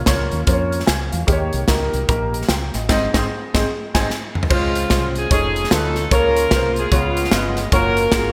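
Uptempo gospel with a swung, soulful and reverent feel, built on a warm grand piano with audible action noise and a chorus sheen, a dark, round, punchy fingered electric bass and a polished, airy studio drum kit whose gated reverb gives the snare and tight kick a 1980s gloss under a lush hall. After a band accent, a piano fill from 3.3 seconds and a short drum fill, a clear saxophone section with light vibrato takes up the melody at 4.5 seconds, playing up front over richer chords until the excerpt breaks off.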